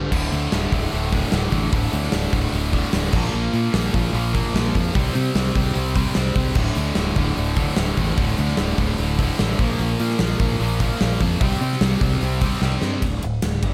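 A cranked stack guitar and a high-gain distorted guitar open this heavy, aggressive hard rock excerpt at 149 BPM in D minor, joined within the first instant by a tight, double-tracked distorted guitar, a growling fingered electric bass and a gated 80s drum kit. The three picked guitars stack up a riff over power chords moving from D5 to Bb5 to C5 and back, with the overdriven stack guitar and the tight one sitting in the background. Driving everything from below, the bass is punchy and overdriven, its direct and amped tone giving a growling edge to the low end. Up front, the acoustic kit has a bright stone-room sound, a gated room, a punchy kick, a medium-tuned snare and bright cymbals. A drum fill from 12.6 to 13.0 seconds closes the passage, the high-gain and tight guitars stopping at 13.0 seconds while the stack guitar, bass and drums carry on to 13.7 seconds, all under light reverb.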